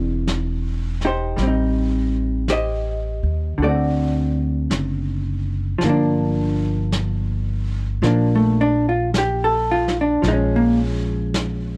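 A melancholic, smoky jazz ballad in G minor, cut from a longer piece, moves at a slow 54 BPM in 4/4 with a swung eighth-note feel, as a dark, clean, compressed hollow-body electric guitar and a woody pizzicato upright bass with steel strings sit up front, the guitar comping through chords such as E7b13, Am7b5 and D7 before settling on Gm7. A vintage brush drum kit joins at 0.3 seconds, its medium-tuned snare warm with a rolled-off top and breathing in a small, pumping room. Studio reverb wraps the trio, and the harmony shifts to Bbm7 at 10.2 seconds.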